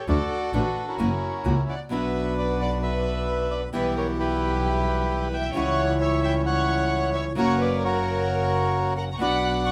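Tango with a playful, passionate rubato feel, cut from a longer piece: a reedy, dark bandoneon carries the melody up front, joined by a smooth, bowed violin section with vibrato on a second line and a bright, fingerpicked nylon-string guitar. A single bowed double bass sits forward with a focused, clear tone. From 1.9 s a second, close-miked bandoneon adds dry, full stabs in the background as the harmony moves from Bm through C#dim and F# back to Bm, all set in a moderate large studio reverb.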